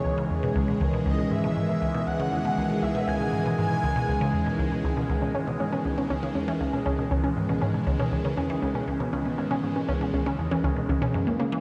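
A breathy, flute-like synth lead carries a soft melody over an evolving, morphing wavetable pad and a squelchy, resonant blip pluck riff, setting a mysterious, expansive tone for this ambient, sequencer-driven space music in C# minor at 119 BPM. The lead falls away at 4.5 seconds, and a lush, warbling unison pluck enters at 5.2 seconds with arpeggios alongside the sustained C#madd9 chord. A wet spring reverb and plentiful tape echo give the short cut an echo-heavy, floating sound.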